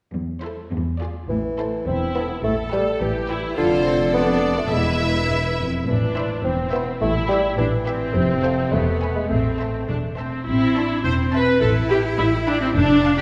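A dark solo bassoon with light vibrato stands up front from 1.3 s to 10.2 s, lending a sneaky, magical edge to this playful, whimsical film cue in A minor, cut from a longer piece. It moves at 105 BPM in a straight 2/4, and the bowed strings carry the rest. The cello section opens the cue at 0.1 s with a rich, focused bass line, and the double bass section adds a smooth, even low foundation once the bassoon arrives. A clear violin section sings the melody high above, while a second violin section in the background supplies a lush, smooth second line. The viola section sits up front with a focused accompaniment. Chords such as Am, Em/A, F6 and E cycle beneath, and a wet scoring stage reverb places the ensemble further back in the room.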